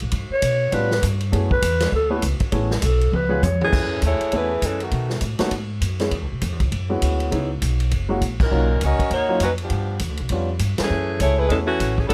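Upright bass and a swinging big-band drum kit open this fast big band swing passage at 201 BPM in F# minor. The woody, thumpy pizzicato bass sits low beneath a natural-sounding kit with a punchy kick, medium-tuned snare, hi-hat, ride, crash and toms. Almost at once a growling clarinet takes the melody up front, raspy and gritty with vibrato, while a warm baby grand piano enters underneath with an open, long-sustaining accompaniment. A drum fill at 3.1 seconds leads into the second section, where a saxophone section arrives with a smooth top, soft attack and light vibrato, then drops out at 5.2 seconds before returning at 8.4 seconds amid band accents. The harmony moves through rich extended chords such as F#m11, G7#11 and Bmaj9#11, giving the dramatic, sultry mood its edge, and the close, detailed recording with little reverb keeps this cut from a longer piece dry and present.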